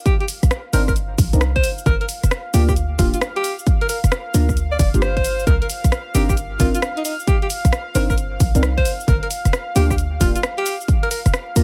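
Moody and late-night, this two-step UK garage excerpt swings over a punchy, up-front electronic kick, a layered house kit of cabasa, hi-hat and rim click in studio reverb, and a tight, sine-based 808-style bass that enters at 0.4 seconds. A mellow analog pad with chorus and sidechain pumping holds sustained Cm9 and Gm7 chords, while deep, dark chord stabs with chorus, phaser and a filter sweep join at 0.7 seconds. On top, a clear alto saxophone plays a jazz-style solo melody with light vibrato, scooped notes and dub echo in an otherwise dry mix.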